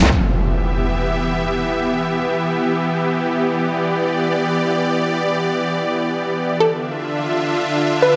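A lush, detuned supersaw pad opens this heavy, menacing dubstep passage in free time, holding sustained chords in E phrygian through a low-pass filter while an electronic impact hits at 0.1 s and rings until 1.7 s. The pad moves from Em to Dmadd9 as a punchy, wave-folded unison pluck enters at 6.6 s with a short melody, colored by cassette tape and dub echo. A moderate digital room reverb surrounds this brief section cut from a longer piece.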